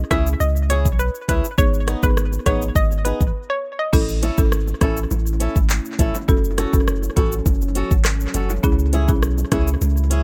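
An up-front, electronic afro-pop drum kit, with a deep kick, metallic hi-hats, handclaps, rim clicks, shaker and crash cymbal, drives this tough, hypnotic dancehall cut at 102 BPM in a straight 4/4. It is anchored by a punchy sine sub bass with a pitch-drop attack, while a dry, woody marimba and a boxy, fingerpicked swing-style acoustic guitar fill out the C#m and G#m harmony. A hollow, bouncy square-wave pluck carries the melody through chorus and tape echo until 3.9 s, when very quiet, low-tuned bongos enter and the chords move to A and F#m, and from 5.2 s a moody sawtooth pad with sidechain pumping sits in the background of this echo-heavy, fairly dry-roomed section of a longer piece.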